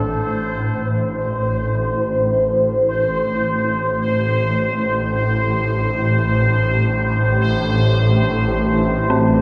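In free time, this unsettling, desolate dark ambient drone in A minor, cut from a longer piece, sets a swarming, warbling sine drone with phaser up front beside a bubbling, resonant sawtooth texture of random filter steps, while a deep, moody analog pad fades in on sustained chords in the background and an eerie, inharmonic FM bell enters with arpeggios at 9.1 s, all soaked in an echo-heavy, wet chamber reverb.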